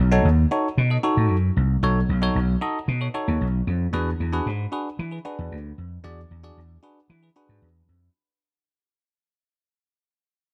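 Early-eighties boogie funk with a danceable, slick mood, this short cut features a punchy, growly vintage slap bass up front, joined at 0.1 seconds by a clean, bell-like tine electric piano treated with phaser, moving from B7 to E7 in a dry, close mix as it fades out.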